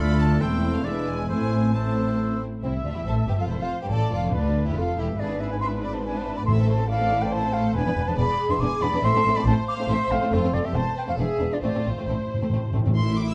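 Stormy and dramatic, this quick classical-period movement for symphony orchestra moves in a brisk triple metre, heard here as a fragment cut from a longer piece. A distant violin section carries the bowed melody with smooth, even vibrato, while a closer violin section and a mellow, airy flute with a straight tone and soft attack spin second lines alongside a focused viola section and a cello section in the background. A rich, even double bass section anchors the bass from the start to 13.3 seconds. In the opening seconds a clear oboe with light vibrato, a very quiet clarinet and a dark, very quiet French horn section holding sustained chords add colour before falling silent at 2.4 seconds. Close timpani with medium mallets and plastic heads sit in the background, entering at 3.9 seconds and returning for a fill near the close at 11.6 seconds. Close, detailed microphones and moderate recital hall reverb give the ensemble clarity with a sense of space.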